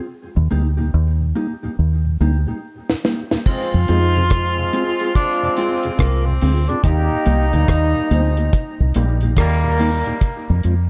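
A round, punchy fingered electric bass sits up front in this spacious, hypnotic dub reggae excerpt at 71 BPM in F dorian, joined from the start by a dark, clean electric guitar and a soft, flute-like tonewheel organ in the background with key click, chorus vibrato and slow rotary speaker, both drenched in dub echo. A dry, tight reggae drum kit with a high-tuned snare and rim clicks arrives at 2.9 seconds, and at 3.5 seconds the chords move from Eb to Fm as a distant, roomy tenor saxophone takes the melody over a vintage trombone section with light vibrato, both trailing dub echo. The echo-heavy mix carries light reverb and small room ambience.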